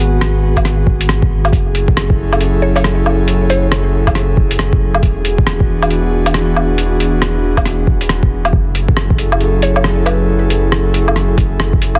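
A deep, round dub sub bass and a breathy, detuned, chorused pad open this wistful, nocturnal future garage excerpt at 137 BPM in F# minor, both pumping with sidechain over chords moving from G#m7 through F#m9 and E7. They are joined by an overdriven, compressed lo-fi sampler-style kit of swung hi-hat, rim click and woodblock with a soft-clipped snare, and then by a muffled, thumpy, pitched-down kick drum that sits up front, while a woody FM mallet pluck with 12-bit grit and tape echo surfaces in the background at 2.6 and 9.6 seconds.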